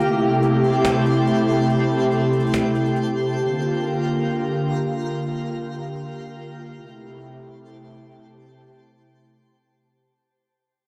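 Atmospheric cloud-rap hip hop in an ethereal, hazy mood at 142 BPM with a half-time feel, built on a dark, detuned sawtooth analog pad holding sustained Am7 and Gm7 chords up front with chorus and a filter sweep, a twinkling, sparkling granular FM texture shimmering an octave up with its own reverb, and a snappy acoustic cajon that plays only until 3.0 seconds, all heard in a blown-out, overdriven recording with light reverb that fades out across this excerpt cut from a longer piece.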